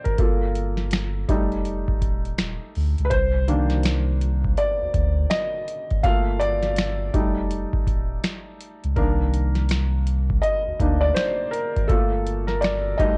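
Lo-fi hip hop at 82 BPM in 4/4 with a 62% sixteenth-note swing, this melancholic, hazy excerpt in C dorian cycles through Gm9, F7 and Cm7 as a soft, intimate felt-muted upright piano, up front with audible action noise and a cassette-tape tint, plays a solo from 0.0 seconds, joined at 0.1 seconds by a round, sine-like sub bass and a booming, overdriven analog drum machine of deep kick, crisp snare, metallic hi-hat and finger snaps that also carries a cassette-tape colour, the whole captured dry as a home recording on cassette.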